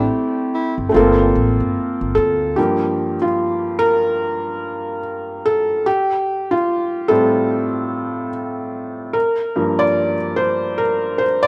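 Hip hop excerpt with a hazy, reflective mood and a swung 4/4 feel, built around an up-front felt-muted upright piano whose soft, intimate tone carries audible action noise and plays from the start to 11.5 seconds, moving over chords from Am7 and Gm11 to Gm7. A tenor saxophone with vibrato, scooped notes and tape echo sounds a single brief phrase in the background until 0.8 seconds, while a woody, thumpy pizzicato upright bass sits up front until 2.5 seconds, after which the piano plays alone from 2.6 seconds. The mix has light reverb, small room ambience and the dull, rough character of a home demo.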